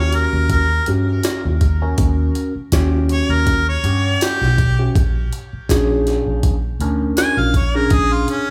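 Recorded by a band playing live in one large studio room with a moderate reverb, this brief cut from a longer straight-eighth soul blues track swaggers along at 81 BPM in 4/4, shifting from Eb7#9 to Bb7#9 at 5.0 seconds. Up front, a bright, close-miked harmonica carries a jazz-style solo melody with light vibrato, soft attacks and scooped notes, colored by overdrive and tape echo, while a barky, overdriven tine electric piano through a combo amp adds phaser-swirled accompaniment. Underneath, a dark, round, foam-muted vintage electric bass punches forward, and a compressed, pitched-up, jungle sampler-style kit of hi-hat, tambourine, thumpy kick and high-tuned snare brings a gritty edge from 0.1 seconds.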